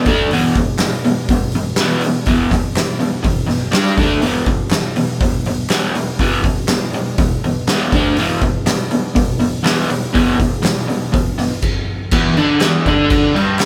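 A straight, driving 4/4 pulse at 122 BPM anchors this rowdy, raw garage rock excerpt from a longer piece, played live in one room with light reverb, where a crunchy, bright, double-tracked electric guitar riff with harmonic tremolo cycles through D5, E5 and G5 power chords up front. An oversized, low-tuned acoustic drum kit pounds beneath it with a fat snare, boomy kick and dark cymbals, its big, pumping room sound saturated and gritty, while a very quiet group handclap adds crisp accents from 0.8 seconds. Everything halts for a brief stop at 11.6 seconds before the band crashes back in on an Em7 at 12.1 seconds.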